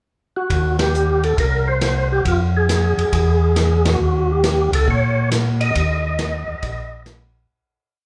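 A swinging 4/4 groove at 137 BPM drives this short, greasy soul jazz organ trio in Eb mixolydian, heard as a live club gig through the venue's PA with a roomy reverb. After a brief pickup bar, a vintage acoustic drum kit settles in at 0.5 seconds with a sticks backbeat and a ride cymbal pattern, its dark cymbals, punchy kick and medium-tuned snare sitting in a small, pumping room with a rolled-off top. Beneath it, a mellow tonewheel organ plays a round, dark two-feel bass line through a slow rotary speaker, clean and up front with audible key click and vibrato. On top, a percussive tonewheel organ carries a motif-based melody built from period phrases, fat and lightly overdriven with second harmonic percussion, chorus vibrato, slow rotary swirl and a slapback echo. The band hits accents at 0.7 and 3.8 seconds as the chords move from Eb through C5, Fm and E to Eb7, and the whole performance fades out from 5.8 seconds, closing the piece at 7.5 seconds.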